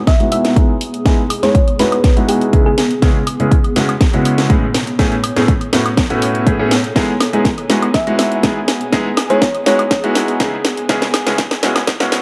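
Piano house with a feel-good, joyful lift, this short cut from a longer piece rides a build-up where a clear, smooth concert grand piano riff with deep bass and a vintage edge sits up front under a filter sweep, pumping with the sidechain and trailing analog delay as the harmony moves between Emaj7 and C#m7. A punchy, layered electronic kick and a house kit with cracking snare, warm hats and woodblock drive a drum fill throughout, while a round, tine-like FM pluck resembling a thumb piano plays gentle melody phrases at 0.1 and 7.9 seconds through chorus and delay. Deep in the background a cloudy, evolving granular pad breathes with sidechain pumping and its own reverb, all set in an echo-heavy mix with spring reverb and digital ambience.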